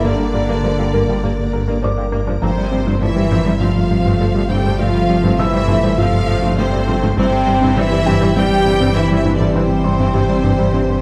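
A roomy French horn section holds sustained chords in this brooding, tense cinematic cue, a hybrid orchestral and electronic film score in a straight 4/4 at 101 BPM. A smooth synth bass riff and a deep, round dub sub bass anchor the low end alongside bowed cello and double bass sections, while a mellow trombone section adds very quiet sustained chords. Two lush violin sections carry the melody and a second line with focused vibrato, supported by a distant viola accompaniment, and a tight, driving sequenced synth with filter pluck, chorus and phaser threads faint arpeggios through the texture. A pure, detuned organ-like pad and a felt-muted upright piano, dark and intimate with audible action noise, sit softly in the background. The harmony moves over G from Bb/G to F/G at 2.4 seconds and C/G at 7.2 seconds, set in a wet recital hall reverb, in a passage cut from a longer piece.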